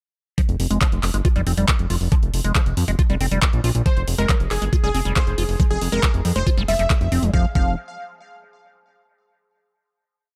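A driving, hypnotic psychedelic trance piece in F harmonic minor at 138 BPM and a straight 4/4, built on an overdriven, knocking electronic kick that sits up front in a four-on-the-floor pulse alongside a programmed drum-and-bass kit of bright, overdriven hats and claps on the backbeat. From 0.5 s a fat, detuned analog bass rolls in sixteenth notes up front as the low foundation, thick and sawtooth-edged with ring modulation and a filter sweep, while a squelchy, resonant acid line runs a 16-step riff with accents and slides, colored by phaser, dub echo and sidechain pumping. At 3.9 s a punchy supersaw stab joins with a repeating riff melody, its detuned unison given a noise layer, 12-bit sampler grit, phaser and digital delay. Shortly after, an evolving wavetable pad holds a single high note far in the background, warbling and morphing through chorus and its own reverb while pumping with the kick. 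The groove runs in a dry, close sound until 7.3 s, when the drum kit and pad drop away and a final chord rings out to the end.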